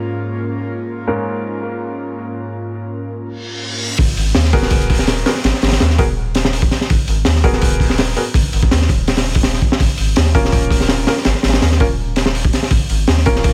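Drum and bass with a jungle edge, this excerpt from a longer piece runs at 165 BPM in a straight 4/4, in G# dorian, with a mood that is both frenetic and nostalgic. It opens on an airy, breathy pad holding sustained chords, its detuned, full-bodied tone coloured by chorus and ring modulation, alongside a vintage grand piano playing short stabs through a low-pass filter and dub echo, with audible action noise giving it an intimate feel. A reverse cymbal and downlifter sit in the background and lead into the drop at 4.0 seconds, where the pad has stopped and the piano carries on. Here a crunchy, saturated breakbeat kit lands up front, with a punchy kick, a high-tuned snare, hi-hat and a gritty, rolled-off top, while a soft, round dub sub bass fills the low end with deep, sustained notes. The harmony moves from A#m/G# to G#m9 and then to A#m at 9.8 seconds, all within a small room ambience.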